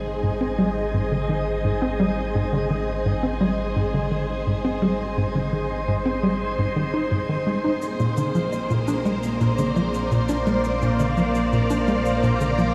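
Lush, vintage string-machine chords with ensemble chorus and a deep, round analog bass open this mysterious, hypnotic stretch of ambient, sequencer-driven space music at 85 BPM, joined at 0.2 s by a tight, punchy, dark sequencer bass riff with subtle chorus and delay, while the harmony moves from Ab to Bbadd9 at 7.8 s, where a faint analog shaker and woodblock with delay slip in behind, all bathed in a long shimmering reverb with a cassette-tape, stone-room character.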